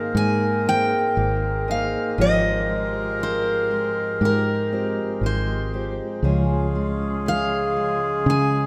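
This tender, heartfelt acoustic folk-pop ballad moves at a slow 59 BPM in a straight 4/4. It opens with a full-bodied, picked steel-string acoustic guitar carrying the melody up front. From the start, a classical-style clarinet adds a warm second line, while a mellow tine electric piano sounds clean through its built-in speakers as accompaniment. A close-miked, dry harmonium breathes reedy, nasal sustained chords, and a second jumbo-sized acoustic guitar plays arpeggios in the background, with a finger squeak audible. A foam-muted fingered electric bass, direct and amped, joins up front at 0.1 seconds, as the chords move from Abadd9 to Fmadd9/Ab at 2.2 seconds and Db at 6.2 seconds, the rough home-demo mix set in a lush, wet hall reverb and cut from a longer piece.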